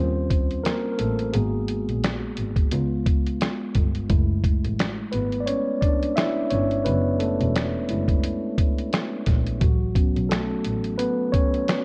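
A mellow, clean tine electric piano leads up front through its built-in speakers in this nostalgic, hazy lo-fi hip hop excerpt with a swung 16th-note feel, joined at 0.3 s by a compressed, muffled, pitched-down sampler-style kit of finger snaps, hi-hat, thumpy kick and medium-tuned snare, over a dark, veiled bowed double bass played con sordino with vibrato and a soft attack until 11.0 s, the whole mix set in light reverb and cassette tape coloring.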